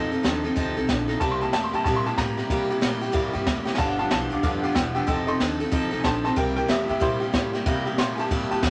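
Rockabilly excerpt cut from a longer piece, upbeat and rowdy at 186 BPM with a swung 4/4 feel in C mixolydian, where a brilliant, woody upright piano takes a short-sustained solo over a full-bodied dreadnought acoustic guitar picking through F7, C7 and G7 up front, a twangy, slightly broken-up electric guitar riffing in the background through a small old amp, thumpy pizzicato upright bass, and a dark, smooth brush kit with a high-tuned snare and boomy kick that drops a fill at 3.6 seconds, all in a small studio room.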